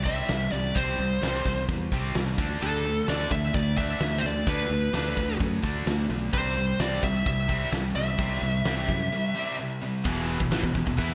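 Hard rock at 129 BPM with a driving, aggressive mood, this excerpt puts a dark, smooth overdriven lead guitar melody up front over a background of bright, picked distorted and scooped high-gain guitar riffs, a growly, punchy fingered bass and a huge arena drum kit with a fat snare and gated reverb, all in a lush hall and bright 1980s-style digital production, with a break at 9.1 seconds before a double-tracked overdriven guitar with subtle chorus joins at 10.0 seconds.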